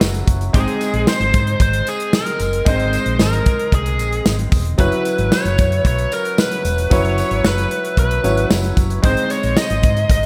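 A glossy, nostalgic 1980s-style pop excerpt in F# mixolydian at 113 BPM opens with a bright, brilliant grand piano over a dark, foam-muted vintage fingered bass, an airy, polished studio drum kit with a tight kick, and a jingly, distant tambourine, before a biting, overdriven lead guitar with analog delay enters up front at 0.6 seconds, all moving between F#7sus4 and G# in a dreamy mix soaked in plate reverb.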